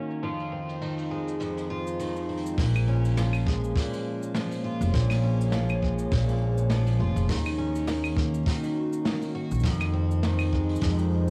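Folktronica at 102 BPM with a gentle 16th-note swing, delicate and intimate, this excerpt opens on a picked twelve-string acoustic guitar playing shimmering, octave-doubled arpeggios with 12-bit sampler grit and analog delay, over a warbling, nostalgic pad of detuned, chorused sustained chords set in the background, while a brushed jazz kit of cabasa, claves, hi-hat and snare comes in at 0.1 seconds. At 2.6 seconds a woody pizzicato upright bass and a boomy, up-front kick enter as the harmony moves from Fm7 through Bbm7 and Ebm7 and back to Fm7. The whole has the muffled, homespun character of a cassette home recording with light reverb.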